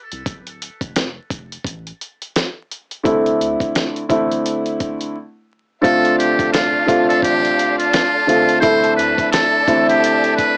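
A dusty, lo-fi cassette sound with vinyl crackle, a small-speaker feel and a moderate booth ambience frames this excerpt from a tough, dark boom-bap hip-hop track in D minor, moving at 86 BPM with a swung 16th-note feel. A gritty, compressed sampler-style drum kit with a thumpy kick, medium-tuned snare and hi-hat opens the piece alongside a deep, round sub bass that sits softly in the background. At 3.0 seconds a mellow, woody upright piano comes up front as the harmony shifts from Dm to C69. At 5.8 seconds the second section begins on Dm7, bringing in a close-miked muted trumpet, buzzy and breathy with light vibrato, playing an intimate, jazz-style solo line, while a lush bowed string section holds sustained chords with a smooth top. A very quiet finger snap adds a human touch between 6.5 and 9.5 seconds, and the harmony returns to C69 at 8.6 seconds.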